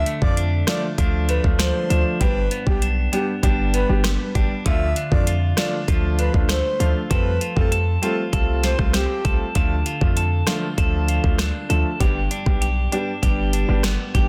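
A dense, heavily limited modern mix with little reverb frames this sultry, tough dancehall excerpt, its Dm, G and Fadd9 changes carried by a hard-hitting 808-style bass with a punchy, sine-based tone and an electronic afro-pop kit whose knocking kick, sharp snare and metallic hats sit up front. A clear grand piano with short sustain joins at 0.2 s, while a twangy electric guitar at the edge of break-up picks arpeggios throughout. A breathy, flute-like synth lead with chorus, phaser, delay and vibrato carries the melody until it drops out at 9.4 s.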